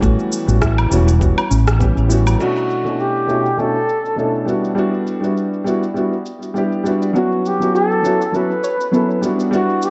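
A wistful, relaxed sunset chillout piece in B minor at 101 BPM opens on a dark, boxy grand piano, soft round pluck arpeggios, an amped fretless electric bass, a gritty, thumpy electronic kick and a muffled, low-passed electronic R&B kit with shaker, rim click, woodblock and crash cymbal, with a light 16th-note swing. By 2.4 seconds the bass and kick have dropped away, and a distant, vibrato-laden flugelhorn takes a jazz-style solo over chords moving from Bm11 through Em9 to F#7sus4, with the pluck returning at 7.2 seconds. Tape echo trails the piano, pluck, kit and horn, and spring reverb fills out an echo-heavy mix with a rolled-off top end.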